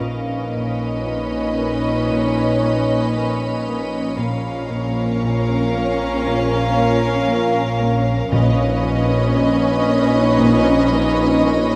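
Sul tasto violin sections open a mysterious, uneasy suspense cue at 58 BPM, the rich upper melody floating over a close second line, a dark, woody viola, an icy, crystalline glass pad with chorus, mellow French horns, a very quiet studio cello riff, and pure, floating cello and distant double bass on Bb, while very quiet timpani sound from 8.3 to 9.8 seconds and a lush violin texture drifts in high from 8.3 seconds, all through a scoring-stage reverb over Badd9/Bb and Bbm chords in a fragment cut from a longer piece.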